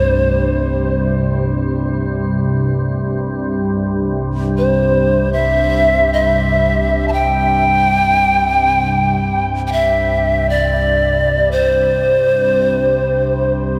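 In free time, this peaceful, spacious world meditation music in C major pentatonic sets a breathy, close-miked pan flute melody with vibrato and a soft attack, bathed in shimmer reverb and diffuse delay, over a detuned, chorused organ-like drone, while a faint bronze singing bowl rings with slow beating only until 2.7 seconds, all within a vast cathedral reverb in this section cut from a longer piece.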